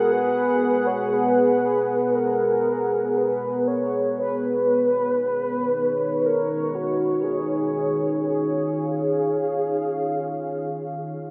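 From the first moment, a mellow, horn-like synth lead and a deep, dark ambient pad sound together, suspended in free time within an ambient setting that feels cavernous and unsettling. The pad holds sustained chords with a slow attack and long release, its detuned sawtooth unison thickened by a sub octave and coloured with chorus and its own reverb, giving a full-bodied, moody foundation. Up front, the lead sings a melody between F#4 and C#5 with a round, vintage, warbling quality, shaped by vibrato, a filter sweep, subtle chorus and tape echo. The harmony moves from G#m7 to C#add9 at 4.2 seconds. A wet cathedral reverb with a 6.3-second decay surrounds the whole short piece, which is cut from a longer work and lasts about 11.3 seconds.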